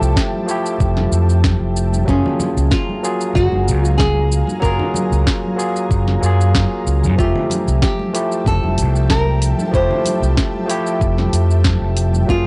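Sunset chillout at 94 BPM with a blissful, sunny mood, where a bright, fingerpicked nylon-string guitar carries the melody over a barky, lightly overdriven electric piano with tape echo and a mellow, ethereal pad with ensemble chorus, all drifting between Fmaj9 and Gbmaj9, while a punchy, amped electric bass sits up front beside a smooth R&B kit with a sharp snare, an overdriven soft electronic kick and distant congas in the background, the whole cut captured as a dry, gritty cassette recording.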